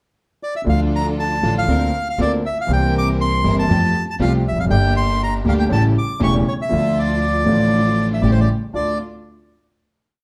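Tango in D minor at 119 BPM with a tense, melancholic rubato feel, where a reedy, up-front bandoneon carries a motif-based melody in sentence phrases through plate reverb over an intimate concert grand piano with audible action noise and deep bass, background bowed string stabs with vibrato, portamento and slapback echo, and a woody, growly pizzicato upright bass, the piano, strings and bass all moving in uneven groups of three and two eighths within a club reverb heard from further back, before closing on a final Dm chord at 8.7 seconds.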